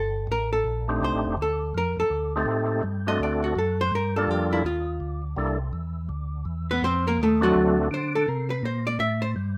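A dark, clean hollow-body archtop guitar sits up front in this soulful, greasy soul jazz organ trio excerpt at 166 BPM in a swung 4/4, while a gritty, overdriven tonewheel organ carries the melody from 0.9 to 7.9 seconds with second-harmonic percussion, chorus vibrato and a slow rotary speaker, over a piping, scooped organ bass line that moves through F13, Gm7 and C13 in a moderate studio reverb.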